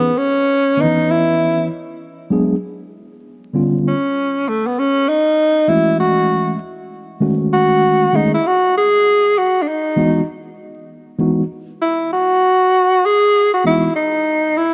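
Warm yet cool, this hip hop excerpt moves at 98 BPM in 4/4 with a swung sixteenth-note feel in E major. A breathy tenor saxophone carries the jazz-style solo up front, its subtone voice soft in attack with vibrato and a smooth top. A mellow tine electric piano sits up front alongside it, clean and heard as if through built-in speakers, shading chords from C#m9 through G7#11 to a closing Emaj9 before dropping out at 13.9 seconds, all under a moderate plate reverb and a layer of vinyl crackle.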